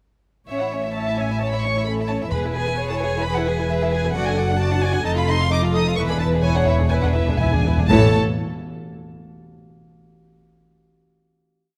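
Lively and cheerful, this quick classical-period orchestral piece sets an intimate, sul tasto violin melody with light vibrato over a rocking two-note figure in the second violins, a viola counter-melody and a dark cello bass doubled by the double basses, while hard-mallet timpani strike at 2.3 seconds and return with a fill at 6.0 seconds as the rubato playing slows toward a final chord in a concert hall's moderate reverb with a faint mains hum.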